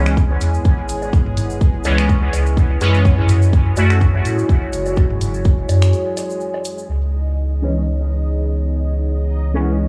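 A dry, gritty hardware recording in a small room frames this hypnotic, hazy dub techno excerpt at 125 BPM in C# minor, where a round sine sub bass sits up front under a deep, moody analog pad with slow-attack detuned chords, chorus, phaser and sidechain pumping. Juicy, resonant sawtooth polysynth stabs with ring modulation, filter sweeps and dub echo drop out at 4.0 seconds and return at 7.6, while a bubbling stepped-filter texture drifts low in the mix with built-in reverb. A deep, layered electronic kick drives the groove until 5.6 seconds alongside dark hats and finger snaps from a deep house kit and a grainy, bright egg shaker, with tape-tinged electronic woodblock and toms entering at 1.0 seconds in the background.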